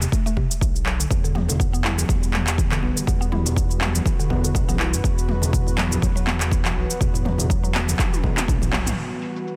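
A punchy, overdriven electronic kick drives this hypnotic afro house excerpt at 122 BPM in E minor alongside an up-front deep house kit of metallic hats, cabasa, handclaps and toms that builds to a drum fill from 8.0 seconds, a round, deep analog bass pumping to the sidechain, and a woody, mallet-like synth pluck playing arpeggios in the background with chorus, phaser, delay and sidechain pumping, while a smooth, detuned sawtooth pad enters at 1.1 seconds with sustained, pumping chords and bright, distant congas sit low in a dense, heavily limited, dry mix.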